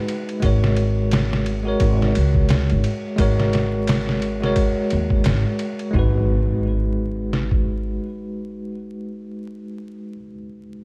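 A bell-like, bright tine electric piano with tremolo and tape echo opens this melancholic, brooding trip hop excerpt in G# minor at 87 BPM alongside an electronic downlifter and impact in the background, joined at once by a gritty, pitched-down, sampler-style drum kit with a thumpy kick, ride cymbal and medium-tuned snare on swung 16ths, and a woody pizzicato upright bass under a filter sweep, as the harmony moves from F#/G# to G#m7 at 5.9 seconds in a dark, dry production dusted with vinyl crackle.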